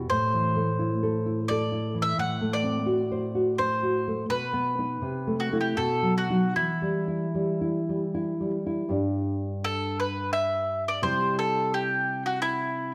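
A romantic duo in a rubato 3/4, yearning and melancholic, in which a bright, picked bowl-back mandolin carries the melody on double strings over a dark, full-bodied, thumb-plucked nylon-string guitar accompaniment, both up front in a wet recital-hall reverb, with the passage moving from its opening section into a new one at 8.9 seconds before the cut from a longer piece ends at 12.9 seconds.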